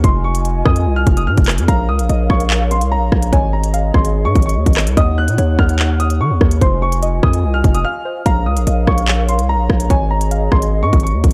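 A dark grand piano leads this ominous drill cut at 146 BPM in Bb minor, its boxy, mellow melody sitting high over a hollow, airy flute ensemble that holds sustained chords with vibrato and tongued edges. From the first beat, an electronic drill kit with a hard-clipped kick, crisp hats, handclaps and rim clicks drives a half-time feel, its sound re-recorded in a large room and placed up front beside the bass. That distorted 808-style bass is heavy and imposing: saturated and aggressive, with a fast attack, a decaying tail and a noise layer riding its sine core. At 1.7 seconds a soft, round pluck enters in the background, a gentle wave-folded line treated with chorus and digital delay that stays until 10.7 seconds. The harmony cycles through Fm7, Bbm, Absus4 and Ebm7, and a brief break at 7.8 seconds resets the menacing pattern before it repeats. The production is dry and dark overall, giving the piece a close, threatening weight.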